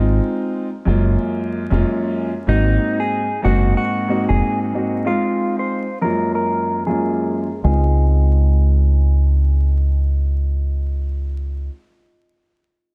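Nostalgic yet confident, this boom-bap hip-hop excerpt rolls at 93 BPM in 4/4 with a swung sixteenth-note feel, centered in Db major. A dark grand piano carries the accompaniment up front, its mellow, vintage tone and long sustain softened by cassette-tape coloring and filtering, moving through Ab6 and Gbmaj9 chords before settling on Dbmaj7. Beneath it, a deep dub fingered electric bass sits loudest in the mix, round, punchy and direct. A clean electric guitar enters at 2.5 seconds with a dark, fingered melody treated with delay and filtering, staying until 9.5 seconds. A filter sweep arrives with the guitar, and a break opens at 5.1 seconds. Light reverb, a studio-room ambience and a bed of vinyl crackle give the track its worn, lived-in character.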